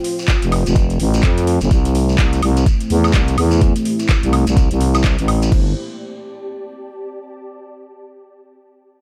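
Bouncy and aggressive, this swung bass house excerpt is driven by an overdriven, knocking electronic kick and a thick, growling FM bass that pumps against it, while an overdriven garage kit of metallic hi-hats, handclaps, crash and woodblock, a grainy, distant shekere, and a moody, detuned sawtooth analog pad under a filter sweep fill out the dry mix, leaving only a very quiet, ethereal airy pad to linger alone from 5.7 to 7.4 seconds.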